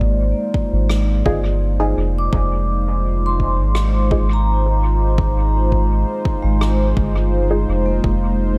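A round, up-front soft dub sub bass anchors this meditative, deep ambient dub excerpt at 84 BPM in F dorian, resting on a single Fm7 chord. A smooth, chorused sawtooth analog pad with vintage 12-bit sampler grit holds sustained chords while a metallic, ringing vibraphone with medium motor vibrato spins arpeggios through analog delay, over a layered, tape-warm electronic kick. A natural-sounding rim click enters at 0.9 s with dub echo, and a muted, detuned, dark chord stab with phaser and cassette tape color sounds from 1.3 s to 7.7 s, all set in a small room ambience within an echo-heavy mix.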